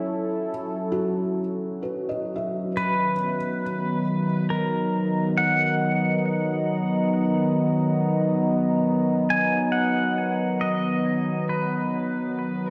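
Warm and peaceful, this ambient piece in 3/4 rests on a smooth, warbling vintage analog pad holding sustained chords, treated with chorus and placed up front. A felt-muted upright piano adds dark, intimate arpeggios with audible action noise and a touch of delay until 3.6 s, while from 2.8 s an electric pedal steel guitar carries a twangy, clean slide melody with volume swells. The wet concert-hall reverb gives the whole piece a spacious, lingering ambience.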